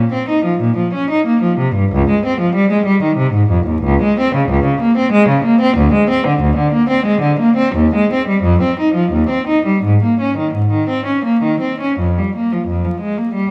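In a rubato 3/4 at 80-95 BPM, this introspective, solemn excerpt from a baroque-style suite movement for unaccompanied cello sets a single bowed, up-front cello with a reedy gut-string tone and light period-style vibrato ranging from Db2 to Eb4, settling in Ab major from 3.8 s, within moderate scoring-stage reverb and a dark production flecked with vinyl crackle.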